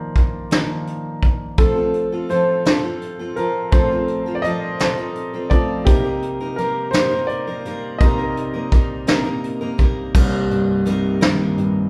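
A heartfelt, swaying six-eight pop ballad cut from a longer piece, where an up-front concert grand piano with a deep bass takes a featured solo until 10.2 seconds over a vintage brush kit with dark cymbals and a punchy kick, while a full-bodied steel-string acoustic guitar enters at 1.6 seconds with picked arpeggios, the whole band sounding live together in a large studio's moderate reverb.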